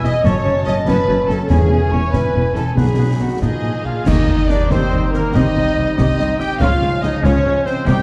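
Mellow French horns hold sustained chords at the heart of this adventurous, soaring fragment of a heroic film score in a lilting 6/8, with a trombone section adding clear, present support behind a lush, vibrato-rich violin melody that has a second violin line alongside it. A metallic, airy flute, a distant oboe and a breathy, vintage-sounding clarinet that drops out at 4.0 seconds weave second lines. Meanwhile dark violas, a ringing fingerpicked harp, distant trumpet stabs, and close cellos and woody double basses fill out the orchestra over dry snare, bass drum and bright clash cymbals. Timpani with soft mallets and a dark cymbal swell with bass drum join from 1.5 seconds, ahead of a full-band accent at 4.1 seconds, all set in a roomy, reverberant scoring-stage sound.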